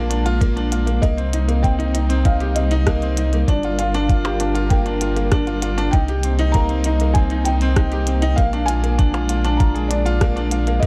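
Piano and strings electronica in C minor at 98 BPM, this cinematic, intimate excerpt pairs a bright, woody upright piano riff with audible action noise and delay against a felt-muted upright melody entering at 1.0 seconds, all resting on a deep sine sub bass and lush, dark bowed strings that pump with sidechain, while a muffled, thumpy kick arrives at 0.4 seconds to join clicky electronic hats, percussion blips and rim clicks already ticking from the start, in a dry, dark production moving through Bb7, Cm7 and Gm7.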